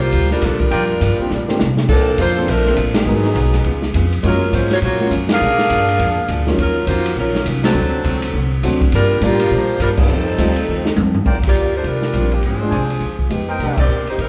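This is a fast, energetic big band swing piece in Bb major at 205 BPM, taken from a longer performance and swung in 4/4. A clear saxophone section carries the melody from the first moment, with light vibrato, up front alongside a woody, thumpy upright bass played pizzicato on gut strings and a dark, smooth drum kit with dark cymbals, a medium-tuned snare and a boomy kick. A dark, clean hollow-body guitar sits in the background with picked, compressed comping until 11.2 seconds, while a natural-sounding upright piano adds accompaniment from 1.2 seconds. After a drum fill launches the main passage, band accents punctuate the harmony as it moves through chords such as Bbmaj7, Gbmaj7 and Ebm9. A trumpet section, heard only in a brief stab near the start, returns at 11.3 seconds with warm, jazz-style hits as the opening theme comes back. The whole band rings in a moderate, concert-hall reverb that gives the ensemble a spacious, live feel.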